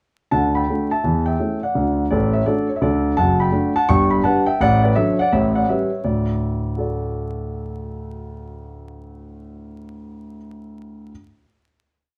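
Stride piano jazz with a swinging, playful mood, this short complete piece features a single concert grand piano playing solo from 0.3 to 11.1 seconds. The piano has a dark, mellow tone with a deep bass, sitting up front in the sound, and it carries a tune in thirds over a stride bass, its range spanning from the low register up into the high treble. The swung eighth notes give the phrases a lilting bounce as the harmony moves through a brief progression of D-based chords, A7 and G before settling on a closing D chord held from 6.0 seconds. The recording places the listener further back in a studio room with a wet reverb, and a layer of vinyl crackle lends it an aged, dusty character.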